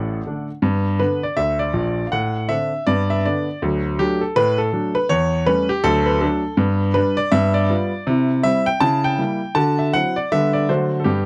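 Stride piano jazz in G major, swinging and exuberant at 161 BPM, this short excerpt cut from a longer piece features a solo grand piano ranging from A1 to A5 across its 11.3 seconds. The piano sounds clear, intimate and up front, with audible action noise and light reverb in a dry, close 1970s-style studio recording. The harmony moves through dominant and diminished colors such as C#dim7 and D9 before settling on G/D and a closing D7.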